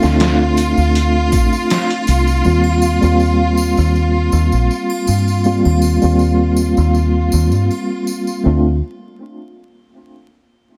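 Trip hop excerpt at 80 BPM in D phrygian, melancholic and smoky, where a gritty, pitched-down sampler-style drum kit with a thumpy kick plays only until 2.3 s, while a deep, round dub bass sits up front beneath a mellow tine electric piano carrying tremolo, low-pass filtering and tape echo, a clear bowed string section sustains lush chords with vibrato, and faint tambourine and triangle sit quietly behind, over chords moving from Dm7 to Eb6 and returning to Dm7 at 8.5 s, with light reverb and vinyl crackle.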